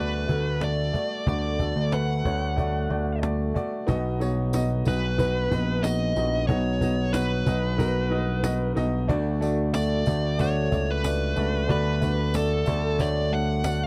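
A dry, close recording with a 1970s studio character and little room sound opens this short cut from a longer piano-driven pop piece, hopeful and uplifting at 92 BPM in a straight 4/4. A warm baby grand piano carries the accompaniment up front from the start, moving from D to B at 3.9 seconds and back to D at 9.1 seconds. Above it, a dark, smooth lead guitar with overdrive picks out the melody in a fairly high register, while an overdriven picked electric bass sits low and prominent with a direct, amped growl. A woody cajon played with soft hands and faint snares keeps time from just after the opening. A jingly tambourine joins in the background at 3.9 seconds, adding a light shimmer to the second section.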